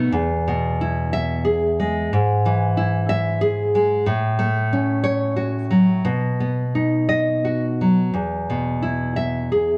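A dark, warm production places a lone nylon-string guitar up front in a moderate concert hall, its notes trailing into a reverb of about 1.7 seconds. This is a romantic piece for solo classical guitar in E major, a fragment of a longer work with a nostalgic mood. It moves in a rubato 6/8, with the dotted-quarter pulse at roughly 56-62 BPM. The fingerpicked acoustic guitar spans E2 to E5 and plays from the start through 9.8 seconds. The harmony moves from E through E/G# and F#m/A to B at 6.1 seconds, then settles back on E at 8.1 seconds.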